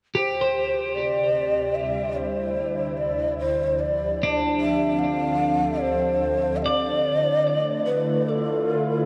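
Reflective, spacious ambient at 74 BPM in 4/4, tuned to A4 = 445 Hz, where a breathy, hollow shakuhachi carries the melody with vibrato and tape echo up front, bright, twangy twelve-string electric guitar arpeggios with tape echo ring until 8.6 seconds, and a detuned sawtooth analog pad with chorus and tremolo fades in beneath them, shifting from C/D to Fmaj7/D at 3.4 seconds, all bathed in a huge, wet reverb and a cassette-tape sound.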